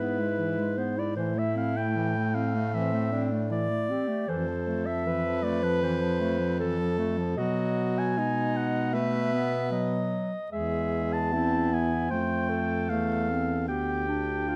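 In a rubato 4/4 around 77 BPM, this melancholic, elegiac classical excerpt in A minor sets a single-reed quartet moving through Am, Fmaj7, B7 and E before closing on F and Dsus4. A mellow, up-front clarinet carries the melody alongside a clear, soft-attacked alto saxophone on a second line, a warm lower clarinet in accompaniment, and a baritone saxophone with light vibrato on the bass. Close, detailed microphones and light reverb keep each reed intimate and present.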